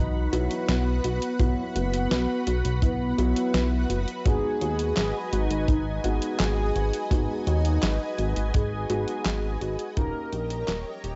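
Lo-fi and dusty, this home cassette recording sits in a small, lightly reverberant room with a dulled top end, capturing a nostalgic, driving synthwave passage cut from a longer piece. A glossy, nasal chorused synth bass sits up front with tube saturation and sidechain pumping beneath a mellow, brassy synth brass melody treated with chorus, analog delay and shimmer reverb. A silky analog string pad holds sustained chords, a very quiet soft round pluck traces arpeggios, and a dark baby grand piano adds background stabs, while a detuned 8-bit drum machine with handclaps, hi-hat and snare enters at 0.3 s and a punchy acoustic kick joins at 1.4 s before the fade-out begins at 8.1 s.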